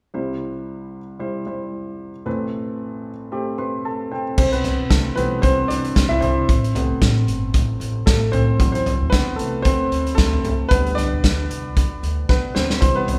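A moderate recital-hall reverb with a 1.7-second decay gives this hopeful, anthemic piano-driven pop excerpt the air of a church or concert hall. A concert grand piano opens alone, intimate and natural, with audible action noise, deep bass and short sustain. It moves between C and Amadd9 in C major at 114 BPM with a light swing on the 16ths, and a piano fill leads into a new section at 4.4 seconds. There the piano takes a solo over C, Amadd9, D7 and G, as a woody, growly pizzicato upright bass with steel strings enters alongside a loose indie drum kit of crash, hi-hat, kick, snare and toms. The kit sounds distant and roomy yet up front, with dark cymbals, a medium-tuned snare, a punchy kick and a rolled-off top. A short drum fill at 12.3 seconds arrives near the close of this fragment of a longer piece.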